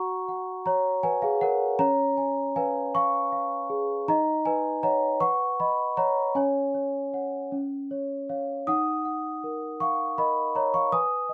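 A large celesta plays alone from the first moment in this innocent, dreamy classical lullaby, its bell-like, sweet tone set close and up front, with medium felt hammers giving each note a full, ringing body across a range from C#4 to D#6. The rubato lilt in 6/8 drifts through F#, C#, D#m, Bmaj9 and C#sus4, resolving to C# before settling on D#m at 8.7 seconds. A modest small-room reverb and a dark production frame this brief excerpt from a longer piece.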